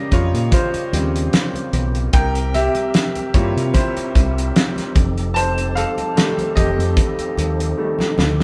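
Recorded with a band playing live in a stone room with moderate reverb, this short excerpt of lush 1970s-style soul feels bittersweet and silky, with a light swing on the sixteenths. A bright, brilliant baby grand piano takes a solo up front with long sustain over Bbm69, C7 and F7 chords, while a lightly overdriven tonewheel organ with key click, chorus vibrato and slow rotary speaker sits in the background. A round, punchy fingered electric bass and an acoustic soul kit with a fat snare and tight kick carry the groove alongside very quiet, thin-skinned congas, and the drums play a fill at 7.8 seconds.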